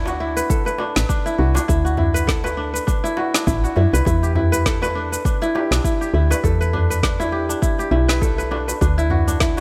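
A light reverb surrounds this mystical, hypnotic organic downtempo piece, cut from a longer work, where a bright, crisp kora sits up front with ringing fingerpicked arpeggios through a digital delay. Beneath it, a soft, round FM bass with tube saturation and sidechain pumping moves over a D to Em7 and back to D progression, while an electronic cabasa and woody, overdriven snare drum enter just after the start. A deep, clay-shelled darbuka stays in the background, and an overdriven electronic kick drum joins at 0.5 seconds, giving the swung groove its low weight.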